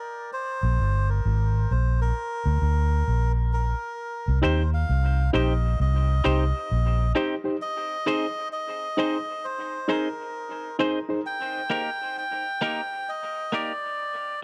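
Reggae with a deep, meditative mood and a swung feel, this recording is cut from a longer piece. A breathy, nasal melodica carries the melody throughout, its close-miked, mellow tone trailed by dub echo. During the opening break, a dark, foam-muted electric bass enters at 0.6 seconds, round and up front, and stops at 7.1 seconds. At 4.4 seconds, a clean, picked semi-hollow guitar with a compressed, hollow-body sound and a worn, slightly out-of-tune reed electric piano join; the piano plays reedy stabs through its built-in speakers, and both carry dub echo. The harmony moves from Bb to C minor, Ab and Eb, all captured in a close, 1970s-style studio sound with very little reverb.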